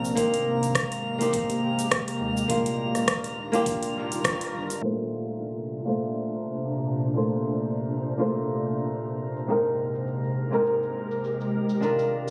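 Washed in a lush hall reverb with a phone-in-the-room haze, this relaxed, sunny sunset chillout fragment in Bb major moves at 103 BPM with a gentle sixteenth-note swing, as a boxy, thumb-plucked flamenco guitar with tape echo sits up front over an ethereal, detuned pad, drifting glassy harmonics, and a smooth R&B kit with metallic hats and shaker, while a round analog bass and a knocking electronic kick sit in the background through the opening section, the kick fading out around 4.4 seconds and the bass at about 4.8 seconds, when a filter sweep begins on the guitar through lush major-ninth chords.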